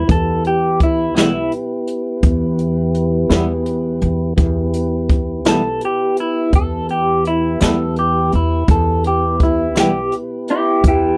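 A soulful, brooding slow blues in E minor at 56 BPM in 12/8 opens on a dark, slightly broken-up, lo-fi electric guitar melody with phaser, over soft, flute-like tonewheel organ chords with key click and a slow rotary speaker, and a woody, growly upright bass. Brushed drums in a distant, roomy space join at 0.1 s, and a twangy, clean electric guitar with tremolo, featured as a solo voice, enters at 1.1 s. The sound is dry and intimate, with the lead guitar, bass and drums up front in this short excerpt from a longer piece.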